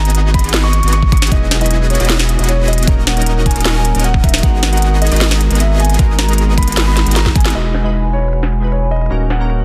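Lush and emotional, this future bass drop in G# minor runs at 154 BPM with a half-time feel: a dark, mellow concert grand piano carries the melody over huge, detuned supersaw chords and a deep, saturated sub bass sitting up front, all three pumping to the sidechain, while glassy, wave-folded digital keys join at 1.3 seconds and an overdriven, knocking electronic kick drives a trap kit with a sharp snare and crisp hats, until a drum fill and band accent lead into a ringing, thumb-plucked harp in the background at 7.6 seconds, all within a dry, dense and heavily limited mix.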